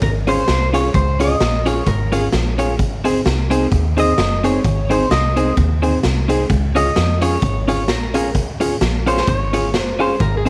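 A clean, fingered electric guitar takes the solo in this cheerful, bouncy ska excerpt, over a slightly broken-up, picked guitar melody played through a small old amp. Up front, a round, foam-muted dub bass and a gritty, saturated garage drum kit with punchy kick and medium-tuned snare push the swung groove in a bright stone room, while a dark, woody, slightly detuned upright piano adds mellow stabs in the background. The harmony moves from Db to Ab at 2.8 seconds and back at 6.5 seconds, with light studio reverb and a layer of vinyl crackle over the whole.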